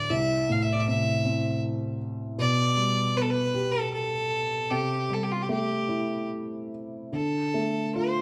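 Celtic folk in a haunting, longing mood, this brief 3/4 fragment of a longer piece drifts in rubato around 71-81 BPM, as a clear, nasal solo fiddle carries the melody with light vibrato over a dark, intimate felt-muted upright piano moving through Am/C, Gadd9/B, C6 and Dm, both up front in a moderate recital hall reverb.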